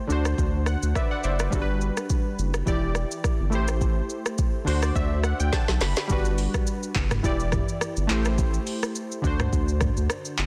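A chorused sawtooth keyboard opens this sunny, joyful afrobeats passage in G major, cut from a longer piece, with the sub bass and drum kit joining at 0.1 seconds. The groove sits at 105 BPM in 4/4 with a lightly swung sixteenth-note feel. The keys are round, full-bodied and detuned, with a filter sweep, a fast attack and decaying notes, adding short fills near the start and again before the change at 6.1 seconds. Beneath them, a thick, saturated sine sub bass holds deep, sustained notes up front. The electronic kit has a deep kick, a woody, softly clipped snare, metallic hats, handclaps, rim clicks, shaker and toms, all roughened with tape-warm 12-bit sampler grit, and it plays a fill just before the second section. Cycling through D7, Gmaj7, Em7 and Am7 in a dry, dense and heavily limited mix, the music feels close and punchy.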